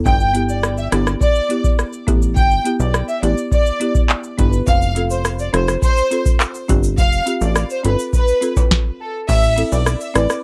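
Tough and hypnotic, this dancehall piece runs at 104 BPM in a straight 4/4, driven by a booming analog drum machine up front: deep kick, tonal snare, metallic hats, handclaps, rim clicks, shaker and crash, all roughened by vintage 12-bit sampler grit. A plucky, punchy sawtooth bass with ring modulation and a detuned edge sits beneath a lush, bowed violin section that carries the melody with expressive vibrato, while a woody, rustic marimba plays dry accompaniment over G6 and F chords. Egg shaker and timbales join faintly in the background at 4.7 seconds, and after a stop from 8.7 to 9.3 seconds the music lands on Am for a brief new section.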